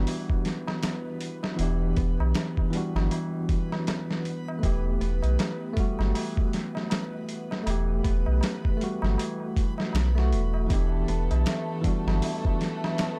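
A bell-like tine electric piano with tremolo and tape echo opens this hypnotic, dark trip hop excerpt at 79 BPM in E minor, alongside a thumb-plucked Celtic harp playing gritty, delayed arpeggios in the background and a round sine sub bass up front that drops out at 12.2 s. A dusty, overdriven sampler-style drum kit with a thumpy kick and a swung 16th-note feel sits forward in the mix, while a high-tuned tabla and a reversed, granular, dreamy texture hover further back as the harmony moves from Em7 to Asus2/E. At 10.7 s a soft-attack violin section enters with floating sul tasto chords, all within a dry, dark production.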